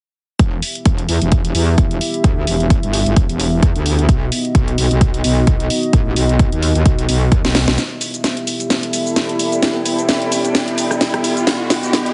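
Bouncy and gritty, this bass house cut from a longer piece moves at 130 BPM in E minor with a swung sixteenth feel. A punchy layered kick and an up-front house kit with cracking snare, hi-hat, rim click and shaker drive the first section, while a metallic, distorted FM wobble bass growls underneath and a dark, detuned analog pad holds moody chords that pump with the sidechain. After a drum fill at 7.4 seconds the kick and bass drop away for a build-up, where a blurred, evolving granular cloud pad enters at 8.8 seconds and a faint electronic riser climbs in the background from 9.0 seconds, all heard through a heavily compressed, radio-like sound with light reverb.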